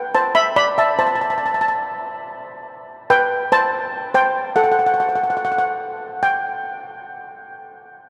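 Calypso with a bouncy, sunny mood, cut from a longer piece, featuring a lone steel pan played with medium rubber sticks as the lead voice, metallic and shimmering, sitting up front from the start until 6.4 seconds. Its line ranges from A4 to B5 over chords including Am11/B and C5, with stretches of unaccompanied playing between them. The whole sound is bathed in a long, cathedral-like reverb that places the pan in a vast, echoing space.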